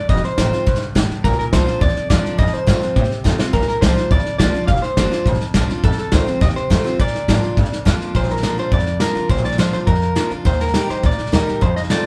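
A straight 4/4 pulse at 208 BPM drives this upbeat, rollicking rockabilly excerpt in Bb major, with a vintage brush drum kit up front, dark and smooth with a tight kick, and a drum fill at 3.2 seconds. A woody, thumpy pizzicato upright bass sits in the background while a full-bodied, picked steel-string acoustic guitar plays through F, Bb and F7 changes, moving to Eb near the end. Over the top, a twangy, compressed electric guitar at the edge of break-up carries the bright melody, and the band plays live together in one room with moderate studio reverb.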